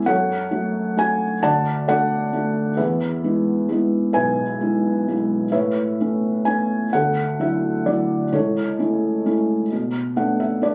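Captured on a phone in a small room, the recording carries a moderate reverb with a club-like air around an intimate, up-front piano. This is a short excerpt of lyrical classical solo piano in A major, moving at 44 BPM in a rubato 6/8 that gives it a peaceful, tender mood. The felt-muted upright is soft and mellow, with a natural tone and audible action noise that brings the listener close to the instrument, spanning from B1 up to A5. The harmony drifts through F#m, D and E before settling into Aadd9, Dadd9 and A/C#. A Bm7 arrives at 9.7 seconds under a brief felt piano fill that carries the passage to its end at 10.7 seconds.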